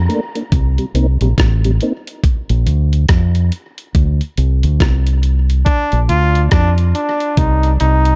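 Over a swung, laid-back dub reggae groove of gritty, compressed sampler-style drums with a thumpy kick, hi-hat and rim click, a dark, round fingered electric bass sits up front while a mellow tonewheel organ with chorus vibrato and slow rotary speaker colours only the opening moments until 1.9 seconds, and after a hazy break a brilliant, punchy trombone with light vibrato and tape echo enters at 5.7 seconds for the rest of this short excerpt, all set in a digital ambience.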